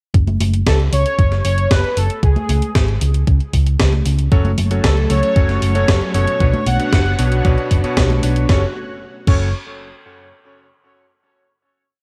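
A short, danceable and bittersweet italo disco piece in F# minor at 115 BPM opens at 0.1 s with a thumpy, overdriven four-on-the-floor electronic kick, a gated 80s drum machine, and a round, dark hollow-body electric bass. The bass plays a driving, up-front eighth-note line, while the drum machine adds hi-hat, congas, crash and a snare dressed in gated reverb. At 0.7 s a fat, brassy analog synth brass carries the melody, singing song-like motifs with vibrato, a filter sweep, chorus and tape echo. At 4.3 s the harmony shifts from bare F# and C# power-chord tones to F# minor and B minor add9. There a lush string machine pad swells in softly behind the band and a clear, clangy electric grand piano punches dotted-rhythm stabs with tape echo. The piece resolves on a final F# minor chord, all captured in a dry, close 1970s-style studio sound.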